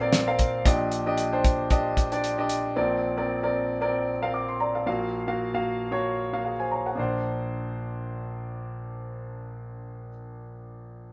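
A lightly swung 4/4 pulse at 114 BPM, with a 56% swing on the sixteenths, sets up this hopeful, uplifting piece of piano-driven pop in Bb major, heard as a short cut from a longer work. A damped 70s acoustic drum kit sits up front with a dry, fat snare, a tight kick and hi-hat, but it plays only from 0.1 to 2.6 seconds. The clear concert grand piano carries the accompaniment throughout, ranging from deep bass notes up into its upper register with a natural tone and long sustain. Its chords move from Bbadd9 to Ebmaj7 and Gbmaj7 over a Bb in the bass, and a new section begins at 7.0 seconds, returning to Bbadd9. The band sounds as though it was playing live together in one studio room, with moderate ambience around the performance.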